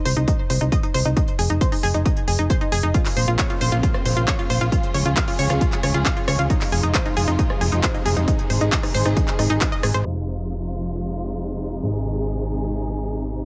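This excerpt from a longer uplifting trance piece opens with a bright, detuned sawtooth pluck playing arpeggios, its chorus and delay giving the notes a shimmering trail while sidechain pumping makes them breathe against the beat. Almost at once a punchy, round FM bass sits up front in the low register, dark and fast to decay, joined by a heavy, tape-warm electronic kick and a techno kit of handclaps, smooth hats and rim clicks that sound re-recorded in a small room. At 135 BPM in F minor the mood is emotional and bittersweet, moving through chords such as Fm7, Bbmadd9, Db and Ab. From 2.9 seconds a lush, distant string section adds sustained, vibrato-rich bowed chords that also pulse with the sidechain. At 10.1 seconds the drums and pluck have dropped away and a filter sweep plays over the bass and strings, while a digital ambience with a low-pass filter colours the passage.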